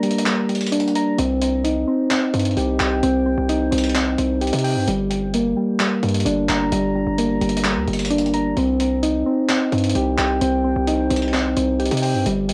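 Round, dark electric-piano-like synth arpeggios with chorus and tape echo lead this brooding, menacing half-time trap passage at 130 BPM, cut from a longer piece, over a gritty, compressed sampler-style breakbeat kit with handclaps and hi-hat, joined at 1.2 s by a punchy, heavy 808-style bass as the chords move between Gm and Cm, all under light reverb with the character of a home cassette recording.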